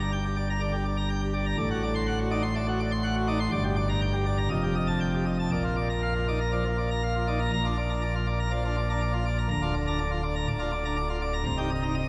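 Classical organ toccata in a dramatic, majestic mood at 122 BPM in straight 4/4, this short cut from a longer piece features a solo pipe organ on full plenum with brilliant mixtures, baroque voicing and audible chiff, placed up front and spanning C1 to C6 in a wet cathedral reverb with a 4.2-second decay, moving from G minor harmonies into B-flat major from 3.5 s and arriving on C minor seventh at 11.5 s.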